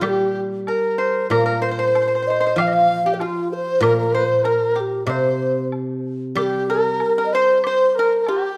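A dark, warm production places this short, wistful and graceful cut from a longer Chinese traditional chamber piece in a moderate recital hall, its ambience lingering for about 1.7 s. At 94 BPM in 2/4 with a rubato feel, and tuned slightly low to A4 = 437 Hz, the airy, hollow xiao carries the melody with vibrato and tongued notes, sitting out front. Beneath it, a bright, reedy large dizi with a buzzing membrane and soft attack traces a quieter second line, joined by a dry, percussive pipa played with fingerpicks. The guzheng supplies low accompaniment with ringing, silvery tones, while a close woodblock sounds faintly in the background. A new section begins at 6.4 s and runs to the end at 8.6 s.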